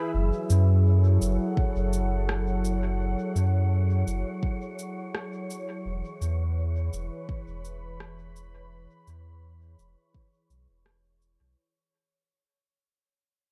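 Ambient dub at 84 BPM in F# minor, meditative and spacious, cut from a longer piece and fading out across its 11.6 seconds: a smooth, detuned sawtooth pad with chorus sustains chords moving from F#m7 to E at 5.9 seconds, an airy, breathy wind-like noise layer drifts high above with its own reverb, a round, mellow sub bass sits up front, an electronic shaker and rim click carry dub echo and a tape-warm small-room tone, and a deep electronic kick enters at 1.6 seconds, all within a light-reverb, echo-heavy mix.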